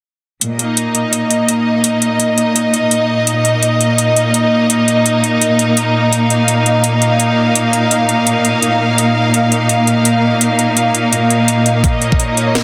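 A half-time drum and bass groove at 168 BPM with a 16th-note swing drives this tense, heavy excerpt, its cracking snare and metallic hi-hats running from 0.4 s, while a knocking electronic kick appears only briefly at 11.8 s. Up front, a clear, biting studio string section holds intense sustained chords with light vibrato and a smooth top, pumped by sidechain, as a detuned, triangle-toned gated texture pulses in the background with chorus and its own reverb. A lush hall reverb surrounds the parts, and the master is dense and heavily limited.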